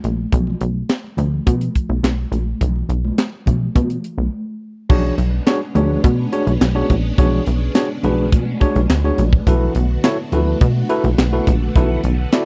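Early-eighties boogie funk at 105 BPM in B dorian, slick and funky, cut from a longer piece: a dry, bright-cymballed drum kit with tight kick, high-tuned snare and handclaps plays alongside a punchy, wave-folded analog bass up front while distant, ringing congas sit in the background, and after a break at 4.3 seconds a worn, slightly out-of-tune tine electric piano and a lush string machine with phaser and ensemble chorus enter at 4.9 seconds over Bm69 moving to D6, all in a close, dry studio sound.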